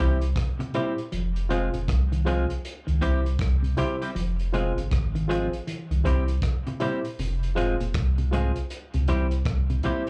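This sounds like a live gig captured through the venue's PA onto cassette tape, with a touch of club reverb coloring the room. It is a laid-back, meditative roots reggae passage cut from a longer piece, in 4/4 with a swung sixteenth-note feel, circling between C and Fm chords. A deep, round sine sub bass sits up front and anchors the low end, while a crunchy breakbeat kit of kick, hi-hat and rim click arrives at 0.2 seconds with a gritty, saturated character and a rolled-off top. A reedy, barky electric piano plays lightly overdriven stabs through its built-in speakers, treated with plate reverb and slapback echo. Two clean, picked electric guitars fill out the middle: one twangy and scooped, comping with tape echo, plate reverb and slapback, and a lower, compressed one tracing arpeggios with slapback echo.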